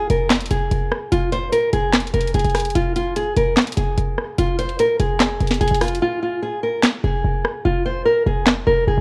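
Eerie and menacing, this half-time trap hip hop fragment at 147 BPM in F minor sits on a single Fm chord, with a small, fingerpicked nylon-string guitar melody with fresh strings and audible finger squeak, a punchy, tight 808-style bass with a fast attack and a noise layer, and an up-front electronic trap kit of sharp snare, bright hi-hats, handclaps and rim clicks, all under light reverb and a worn, warbly cassette-tape pitch drift, until the hi-hats drop out at 6.0 seconds and a brief break runs to 6.8 seconds.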